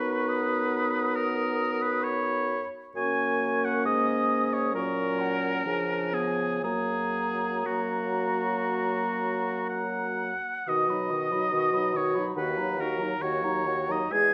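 A moderate recital-hall reverb surrounds this serene, slow romantic movement for wind quintet, cut from a longer piece and shaped with rubato, where an airy silver concert flute with vibrato carries the melody from a distance, a smooth-topped oboe sings an up-front second line, a bright clarinet and a punchy French horn fill out the accompaniment, and a mellow, roomy bassoon holds the bass as the harmony moves into a new section at 10.7 s.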